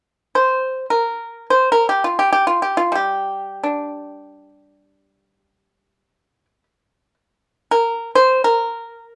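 A solo pipa enters at 0.4 s, played with fingerpicks and placed up front with a dry, percussive attack in a moderate large-studio reverb, unfolding a longing, elegant traditional Chinese melody in free time in the G yu mode, in a passage cut from a longer piece.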